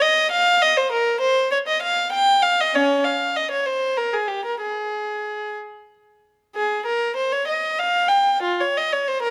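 Solemn and introspective, this brief fragment of a baroque-style suite movement for unaccompanied violin moves in a rubato 6/8 at 61-67 BPM (counted in dotted quarters), in Ab major and tuned to A4 = 445 Hz. A single bowed violin plays throughout the 9.3 seconds, ranging from Db4 to G5 in a period style with a reedy gut-string tone and light vibrato. It sits up front, caught by close, detailed microphones with a light reverb, and its opening idea returns at 6.6 seconds.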